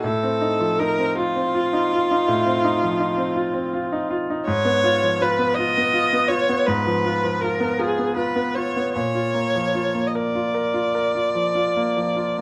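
Rubato phrasing stretches a slow 12/8 pulse, moving at roughly 49 to 55 dotted-quarter beats per minute. This romantic classical duo for viola and grand piano is a short excerpt from a longer piece, with a yearning, solemn mood. The bowed viola carries the melody between F4 and Eb5, its rich tone smooth and even with vibrato, while the piano's brilliant, short-sustained accompaniment ranges from Ab2 to Bb4. Both players sit up front, captured by close, detailed microphones with light reverb. The harmony moves from F7/A through Fdim/Ab at 4.5 seconds and settles on Bb at 9.0 seconds, before the fragment ends at 12.4 seconds.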